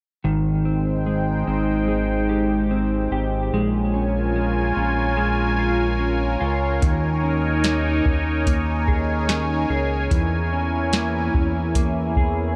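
Dream pop with an ethereal, floating mood, this passage is cut from a longer piece and moves through Abmaj7, Bbm7, Eb7sus4 and Dbm6/Fb chords. A mellow electric guitar plays dark, clean, fingered arpeggios through analog chorus and digital delay, while a fat analog bass anchors the low end with a thick, detuned sawtooth tone, a fast attack and a filter sweep. From 0.6 seconds a phased analog pad holds sustained chords up front, its slow attack and long release giving a bright, swirling sheen shaped by phaser and chorus. At 6.8 seconds a soft vintage rhythm box joins with a deep kick, crisp snare and metallic hats, carrying a tape-warm analog character. A huge ambient reverb surrounds the room, lending the music a spacious, dreamy depth.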